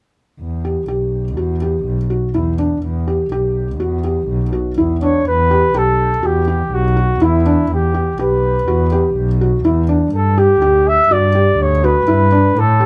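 Hypnotic and restless, this contemporary chamber piece moves in an uneven five-beat meter with a straight feel, taken from a longer work. A bowed double bass opens at 0.4 seconds, played sul tasto with a pure, floating tone and a soft attack that sits up front. Moments later a felt-muted upright piano joins with soft, intimate arpeggios, its hammer action faintly audible beneath the muffled notes. At 5.0 seconds a mellow flugelhorn takes up the melody in a classical style, soloing with a distant, roomy quality while still sitting forward. The harmony rests on E minor before shifting to G at 10.1 seconds, all captured by close, detailed microphones with a light reverb.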